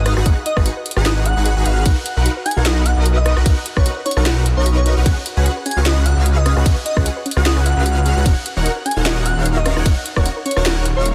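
An emotional, lush future bass excerpt in Eb minor at 150 BPM with a swung half-time feel opens on an airy, dreamy lead singing a vibrato-tinged melody with portamento, its quieter twin tracing background arpeggios, and huge, bright supersaw chords riffing over a thick detuned saw bass, all pumping under sidechain with chorus on every synth and delay on all but the bass, as a trap kit of sharp snare and metallic hats enters at 0.1 s, a soft, round, warbling vintage pluck adds dark arpeggios from 0.2 s, and a hard-clipped kick hits up front from 0.3 s through Abm7, Bmaj7, Db7sus4 and Ebm7 in a dense, heavily limited mix with light reverb.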